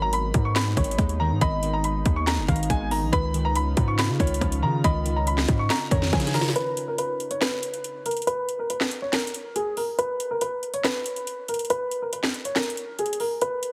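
A heavily compressed, radio-like mix with light digital ambience frames this dark, menacing trap excerpt at 140 BPM in a half-time feel, moving over G#madd9 and C#add9. A clear, worn concert grand piano carries the up-front melody through tape echo and a low-pass filter. At first it is joined by a soft, round pluck line, a crystalline wavetable pluck in the background, an ethereal FM pad with ensemble chorus, and a punchy, saturated 808 bass beneath overdriven drums with a hard-clipped kick, sharp snare, metallic hats and handclaps. After a drum fill, the bass, plucks and pad drop away, leaving piano and drums for a break from 6.6 seconds, with the kick muted from 13.4 seconds.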